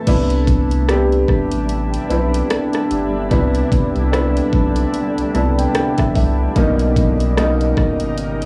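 A dark, mellow concert grand piano sits up front with audible action noise, carrying the accompaniment in this tender, romantic contemporary R&B excerpt at 74 BPM, with a lightly swung 16th-note feel and a piano fill from 4.9 to 6.6 seconds before the harmony moves from Cmaj9 to Bmaj9. Beneath it, a round analog bass with a deep, nasal tone holds the low end, while a trap drum kit with a knocking kick, bright hats, crash and rim click carries a cassette-tape grit. A cloudy, blurred granular pad hovers further back, its slow-attack chords soaked in built-in reverb and pumping with sidechain, all within the intimate feel of a home cassette recording touched with light studio reverb.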